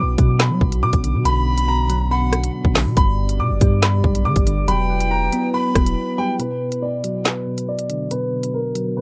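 Lightly reverberant and cold, this dark half-time drill excerpt at 140 BPM in B harmonic minor sets a clear, boxy concert grand piano melody with tape echo over soft, chorused electric-piano-like synth keys, pure, ethereal glass harmonica chords, a deep sine 808 bass and an up-front drill kit with hard-clipped kick, woody snare, crisp hats, handclaps and rim clicks, while a breathy jazz flute with vibrato adds a second line from 1.3 to 6.4 seconds, and a break at 6.0 seconds gives way to a filter sweep on the synth keys.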